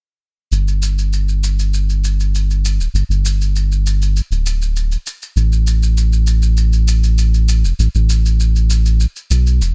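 A round analog synth bass sits up front in this short sunset chillout cut from a longer piece, its deep, dark tone blending sawtooth and sine with a fast attack and sustained notes in the low register from D1 to B1. A filter sweep runs across the bass from 0.5 to 9.7 seconds, giving the part a shifting color. Beneath it, an electronic shaker plays over the same stretch at a much lower level, layered and produced with a tape-warm grain from being re-recorded in a small room. The groove moves at 99 BPM in a straight 4/4, with the tuning set to A4 = 441 Hz. Little reverb is used, so the mix feels close and dry while the mood stays smooth and warm.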